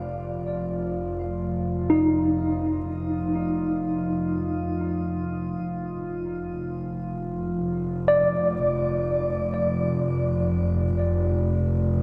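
This serene, reflective ambient passage, cut from a longer piece, drifts in free time as a worn, slightly out-of-tune tine electric piano plays arpeggios between Eb4 and D5. The piano is lightly overdriven, sounds as if heard through built-in speakers, and trails delay and shimmer reverb. Beneath it, a bowed chamber double bass section holds a low F1, rich and earthy, fading in across the full 12.0 seconds alongside an analog drone. That drone, built from sawtooth and pulse waves with pulse-width modulation and chorus, evolves between F3 and F4, its slow attack and long release keeping it sustained. The piano sits up front and the basses sit close and up front, while a cathedral reverb with a 7.0-second decay soaks the sound and lossy compression artefacts color the recording.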